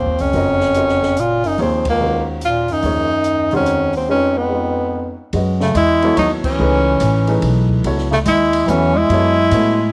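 A moderate echo-chamber reverb gives this short cut from a longer modal jazz piece a roomy, spiritual and hypnotic atmosphere, swinging in 3/4 at 144 BPM in E-flat dorian before shifting to F-sharp dorian at 5.3 s. Up front, a breathy tenor saxophone carries the melody with subtone, light vibrato and scooped notes, while a clear bass clarinet with a soft attack adds a second line. A dark, woody upright piano comps through Ebm9, Db7 and F#m9 chords, a thumpy gut-string upright bass plays pizzicato, and an acoustic drum kit with a high-tuned snare and boomy kick sits low in the mix, joining the band on accents at 1.8 and 6.4 seconds.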